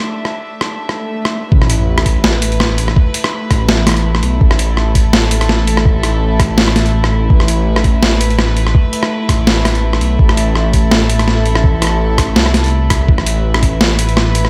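Dry and close-sounding, this dark, tense half-time drum and bass passage at 166 BPM opens with distant, floating bowed strings pumping under sidechain on an A5 chord, gritty boom bap sampler drums with a high-tuned snare joining at 0.3 seconds, and a background swell and sub drop leading into a drop at 1.5 seconds, where a deep, rumbling detuned saw bass and a thumpy kick arrive over Asus2.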